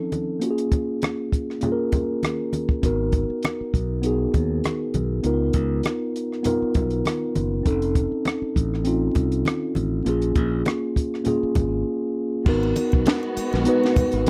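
A dry, close 1970s-style studio sound frames this bittersweet, smooth soul excerpt, where a mellow tine electric piano and a compact cocktail drum kit with a punchy kick and high-tuned snare play from the start alongside ringing, low-tuned congas; a bright, growly fingered electric bass joins at 2.8 seconds, and after a brief break a warm bowed string section with vibrato and portamento enters at 12.5 seconds, with a shimmering triangle in the background.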